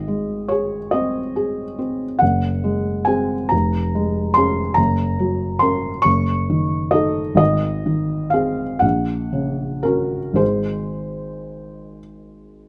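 Swaying in a rubato 12/8 at a slow 36-49 BPM counted in dotted quarters, this romantic classical nocturne drifts with a dreamy, nostalgic mood. A lone felt-muted upright piano, tuned to A4 = 436 Hz, carries everything from F1 up to Db6, its mellow, intimate tone and short sustain captured up front by close, detailed microphones in light reverb. The harmony moves gently from Ab through Ab7/Gb, Db/F, Gb, Ebm7b5/Gb, Ab and Gb/Bb before settling back on Ab at 10.4 seconds, in a fragment cut from a longer piece.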